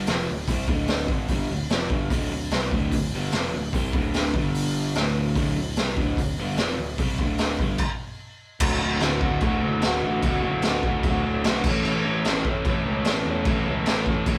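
Heard as a band playing live in one room, this recording carries a moderate studio reverb that lends the sound some space. It is a swaggering, rowdy garage rock piece in D major at 148 BPM in a straight 4/4, tuned slightly flat to A4 = 437 Hz, and cut from a longer piece. Up front, a crunchy, double-tracked overdriven guitar plays the riff over D5 and G5 power chords. Beside it, a raw acoustic drum kit with a boomy kick, a medium-tuned snare, gritty saturation and a rolled-off top drives the groove on crash, hi-hat, kick and snare. Sitting in the background, a fuzzed, picked electric bass adds a bright, growly low end. After a brief stop from 7.8 to 8.6 seconds, the band kicks into a new section over full D and A chords.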